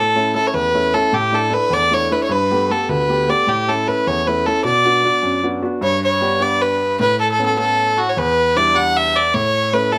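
A single bowed fiddle leads this wild, spirited Celtic jig, its nasal, reedy gut-string tone sitting up front as it carries the melody between F#4 and F#5. An upright piano plays the accompaniment from D2 to G4, with a woody, vintage voice and long sustain that also sits up front in the mix. The tune moves in 6/8 at 102 dotted-quarter beats per minute with a straight feel, tuned slightly low to A4 = 437 Hz. The harmony opens on A, Asus4, Gadd9 and Bm, then shifts into a second phrase at 5.8 seconds that passes through G, Aadd9 and Em7 before returning to A. Light reverb gives the pair a modest sense of space in this short passage cut from a longer piece.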